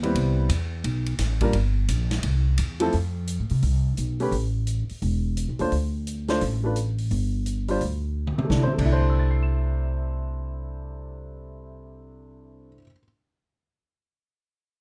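A brisk swing at 172 BPM in 4/4 drives this relaxed small-group jazz excerpt in C major, where a concert grand piano comps intimately up front, its deep bass and audible action noise close at hand, beside a woody pizzicato upright bass on steel strings. A swinging drum kit with a boomy kick, medium-tuned snare, hi-hat, ride, crash and toms sounds roomy and natural, dropping out at 8.9 seconds just after a short fill at 8.2 seconds. The close, detailed sound carries little reverb as the chords move from Cmaj7 through F and Dm to a closing C69, with the bass stopping at 12.7 seconds and the piano ringing on to 13.0.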